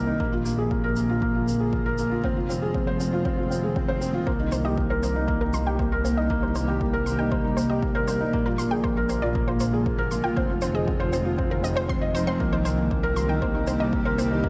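Cinematic and moving, this piano and strings electronica excerpt sets an intimate, felt-muted upright piano riff with audible action noise and tape echo up front over a blurred granular cloud pad fading in from the background, a bowed double bass section with light vibrato, a punchy layered electronic kick and a small-room shaker, while a very quiet electronic swell at 3.7 s leads into a round, bright analog pluck arpeggio with chorus that enters at 4.3 s, the pad, bass and pluck all pumping to the sidechain.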